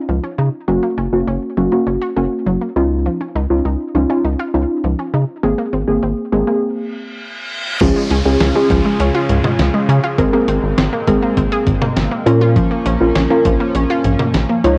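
Synth-pop with an upbeat yet wistful mood, this section of a longer piece opens on a warbling, lo-fi pluck carrying the chords, with cassette-tape wobble and chorus on its detuned tone. A round analog pluck spins bright arpeggios through tape echo, while a rubbery, bouncy square-wave bass sits up front with a hollow, nasal character. The groove halts at 6.6 seconds, and an electronic reverse cymbal and downlifter sweep in from 6.9 seconds to bridge into the next section. At 7.8 seconds a shimmering, retro pulse-width pad spreads sustained chords underneath, and a gritty, sampler-style soul drum kit enters with a thumpy kick, fat snare, hi-hat, crash and toms, compressed and tape-soaked. The whole track has the intimate feel of a home cassette recording, with a light reverb around it.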